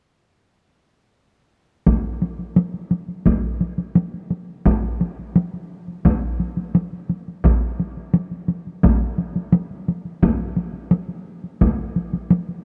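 A straight, steady 4/4 pulse drives this short cut from a longer Japanese traditional piece for taiko drum ensemble, and its mood is powerful and driving. Both parts enter together at 1.9 seconds. A solo taiko player strikes with hard sticks in a close, dry sound placed up front, while the full taiko ensemble plays with heavy sticks and a live-room resonance that is also up front. The ensemble drops out at 11.8 seconds, leaving the solo drums to carry on alone until 12.6 seconds. A light reverb sits over the mix, giving the acoustic drums a sense of space.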